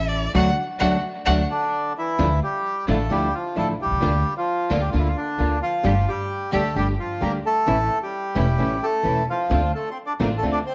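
A boxy, up-front violin opens this sultry, passionate tango excerpt with vibrato and portamento, and the band hits an accent at 0.3 seconds while fingerpicked nylon-string guitar with finger squeak, woody pizzicato upright bass and soft-attack studio strings with tape echo sit beneath. At 1.5 seconds a reedy, airy bandoneon takes over the melody up front, carrying the rubato feel through a progression that moves from Dmadd9 through Bb/D, Gsus2 and A to Dm7. A moderate echo-chamber reverb and small-room ambience frame the ensemble, with the dark bass and bandoneon prominent and the bowed string section kept in the background.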